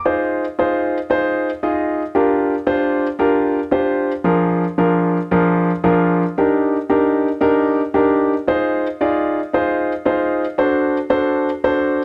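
Soul piano in F dorian at 114 BPM, swung in 4/4, with a passionate, driving mood across this 12-second cut from a longer piece. A solo grand piano sits up front with an intimate, natural tone and audible action noise, ranging from F3 to D6 as it moves through Fm7, Gm7, Bb7/F, Ebmaj7 and back to Fm7 before landing on D7. Light reverb gives the room a subtle sense of space.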